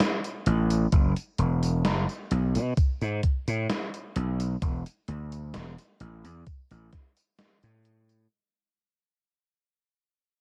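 A gritty, overdriven slap bass sits up front in this slow, nostalgic vaporwave fragment at 65 BPM, its bright, growly, punchy tone entering at 0.5 seconds and ranging from E1 to B2. A thumpy electronic kick drum plays from 0.9 to 7.1 seconds alongside a gated 80s digital drum machine of hi-hat, tambourine and a gated-reverb snare, both tape-warm and re-recorded in a small room. Tuned to A4 = 444 Hz, the melancholic piece, cut from a longer work, carries a light reverb and a cassette-tape sound, and fades out across its full length.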